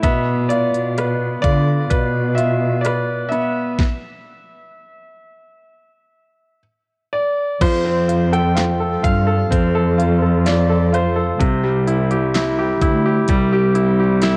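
Pop ballad at 64 BPM, emotional and longing, in which a clear, polished baby grand piano sings the melody through a cassette-tape haze until 13.7 s over a bright, intimate second piano with audible action noise, a veiled con sordino cello section bowing a dark, vibrato-laden bass line, and an electronic, layered pop drum kit with a knocking kick, fat snare, crisp hats and crash cymbal that also carries cassette coloring, with a stop from 3.8 to 7.6 s and chords moving from Bdim through F to C, all set in studio reverb on a home cassette recording cut from a longer piece.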